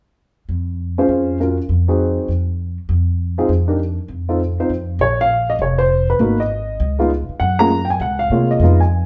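A swung 4/4 pulse at 200 BPM drives this cool, late-night jazz piano trio fragment in Bb minor, cut from a longer piece, where a woody pizzicato upright bass with steel strings enters up front at 0.5 s, a dark, mellow upright piano with intimate, vintage character and audible action noise carries the melody from 1.0 s, and a wet studio reverb places the listener further back in the room as the music moves into a new section at 5.0 s.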